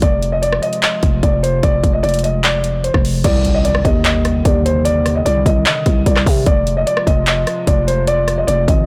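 Dark and menacing, this trap cut runs at 149 BPM in a half-time feel, sitting in C minor and drawn from a longer piece. Up front, a dark, intimate concert grand piano carries the melody between C5 and Eb5, its audible action noise lending a vintage touch, while a growling, buzzy 808-style bass with a fast attack and decaying tail underpins it from F1 to C3. The electronic trap kit is equally forward, pairing a hard-clipped kick with metallic hi-hats, handclaps, rim clicks and crash cymbal. Behind them, a hollow, flute-like pad holds slow-attack chords with chorus, moving from Fm to Cmadd9 and back to Fm at 6.5 seconds. At 3.2 seconds, where the second section begins, an electronic impact sounds in the background until 4.9 seconds. The mix is dry and blown-out, with an overdriven, loud character throughout.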